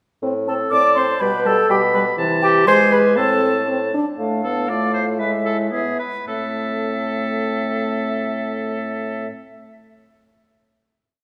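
The French horn and bassoon open this short, complete classical-period movement for wind quintet at 0.2 s, the horn sounding repeated notes and chords in the rhythm of the tune while the bassoon plays the bass on the beats, sustained with passing notes. The flute and clarinet join at 0.5 s, with the flute taking the stormy, restless A minor melody, tongued with vibrato and an airy brightness, doubling the tune at the octave. The oboe enters shortly after, adding a clear counter-melody with a soft attack, while the mellow clarinet, slightly more present than the others, weaves independent inner lines and sustained chords. Moving in a quick, straight 2/4 between 106 and 123 BPM, the music slows from 3.7 s through a brief coda, with the horn answering at phrase ends. It settles onto a final A minor chord at 6.3 s, and the players, most of them distant, ring in the generous reverb of a scoring stage.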